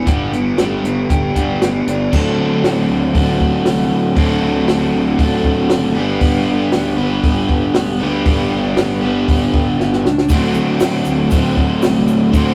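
A pair of raw, overdriven garage guitars sits up front, both picking riffs from the first moment, spanning G2 to C5 through the whole 12.5-second excerpt. This is indie rock at 117 BPM in a straight 4/4, with a bittersweet, cool mood as the chords move between G and D7. A fuzzy, fingered electric bass holds the low end with a round, punchy tone, while a compact cocktail drum kit plays dry and up front, pairing dark cymbals with a high-tuned snare and a tight kick across crash, hi-hat, kick and snare. After a drum fill from 9.8 to 10.3 seconds, a grainy egg shaker joins in the background at 10.3 seconds. The whole performance carries the rough feel of a rehearsal room, with tube saturation and a moderate stone-room reverb of 1.2 seconds.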